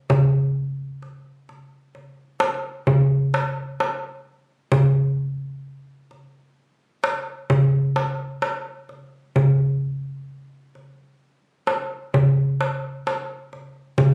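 Festive and warm, this short Arabic excerpt cut from a longer piece sets a solo darbuka with a clay shell and natural skin, miked close and up front under hard hands, in a straight 10/8 at 130 BPM counted in eighths, moving into a new section at 4.7 seconds, all caught on a phone in the room with a moderate studio reverb.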